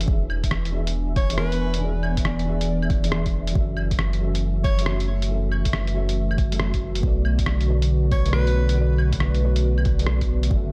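A soft haze of light reverb and digital ambience hangs over this nocturnal, melancholic future garage excerpt at 138 BPM, where a warbling, detuned tape-like pad with 12-bit sampler grit and a muted, felt-dampened upright piano, its action noise audible under ensemble chorus and diffuse delay, both pump with sidechain compression alongside a deep, round sub bass that pumps as well, through the E7, F#m7 and Bm7 changes. A swung, muffled sampler kit of claves, hi-hat and rim click sits beneath an overdriven, layered electronic kick. A breathy alto saxophone with vibrato and tape echo offers brief phrases around 1.2, 4.6 and 8.1 seconds.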